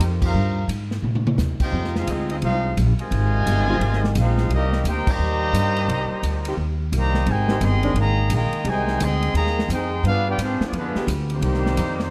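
Sultry and brassy, this big band swing excerpt in C minor moves at 173 BPM, with a clear trumpet section carrying the vibrato-tinged melody over a dark, distant trombone second line, a bright saxophone section holding sustained chords in the background, a woody pizzicato upright bass up front, and an airy drum kit with a punchy kick that adds a quick fill at 1.0 seconds between band accents at 0.2 and 5.0 seconds, all set in light reverb and a dusky production.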